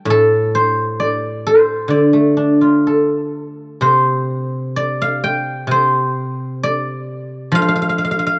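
A solo guzheng, played with fingerpicks and sitting up front with a mellow, silvery, ringing tone, opens this brief, elegant and contemplative fragment of Chinese traditional music cut from a longer piece, drifting in a free rubato around 65 BPM in the D yu mode and shifting to a new section at 3.8 seconds, all captured on a home cassette recording with the light reverb of a small room.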